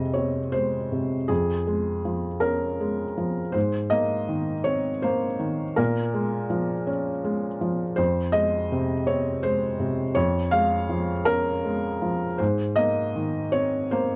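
Reflective and melancholic, this short passage of neoclassical minimalist piano moves in 6/8 with a free, rubato feel. A felt-muted upright piano plays alone for the whole 14.2 seconds, its mellow, hushed tone sitting up front and intimate, spanning from F2 up to F5. The harmony circles slowly through F minor, D-flat over F, A-flat with an added ninth and B-flat minor seventh, then returns to F minor at 8.0 seconds to begin the cycle again. The recording captures a dry, close 1970s-style studio sound with a touch of small-room ambience, lending the piano a vintage character. The passage is cut from a longer piece and closes on the A-flat add-nine chord at 12.4 seconds.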